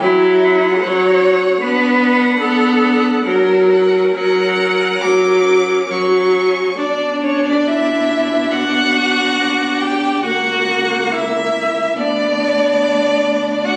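A rich, smooth first violin carries the melody up front in this solemn, elegiac excerpt from a slow romantic movement for string quartet in B minor, moving with rubato at 66-79 BPM in 4/4, where it enters at 0.4 s alongside a second violin's expressive portamento line, over a clear, close viola accompaniment and a warm, distant cello bass that also slides with portamento, the harmony turning from Bm to F# before a second section from 6.8 s passes through F#7/C# to Bm/D, all heard as if captured on a phone in a recital hall with reverb and compression.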